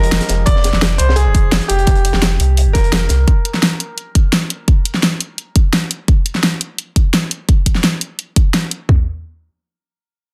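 This dreamy, rolling liquid drum and bass excerpt opens on an Fm9 chord. A clear, natural grand piano melody trails dub echo, while a faint, bell-like tine electric piano drops away by 0.5 seconds, a round sine sub bass sits up front, and a gritty, dark breakbeat kit of hi-hat and high-tuned snare stays in the background. Two layered electronic pop kits arrive almost at once, one with a fat snare and hi-hat and the other with a punchy kick and toms, and they carry on alone from about 3.3 seconds until about 9 seconds in a dry, dense, heavily limited mix.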